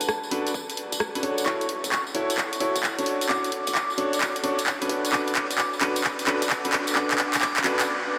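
A skippy two-step garage groove at 131 BPM, swung on the 16ths, is carried by an up-front house kit of handclaps, warm hi-hats and rim clicks in a small room, with a very quiet, punchy electronic kick, a close, jingly tambourine and a hollow, knocking FM bass pumping beneath a high-pass filter in the background. A bright, brilliant grand piano stabs through F#m7, Bm7 and Gmaj7 changes with long sustain and diffuse delay, while a soft, pure synth bell, shimmering with chorus and phaser, floats high behind it. This moody build-up, cut from a longer piece, is soaked in a huge, dreamy reverb, with a drum fill from 1.5 seconds leading to a brief break at 7.9 seconds.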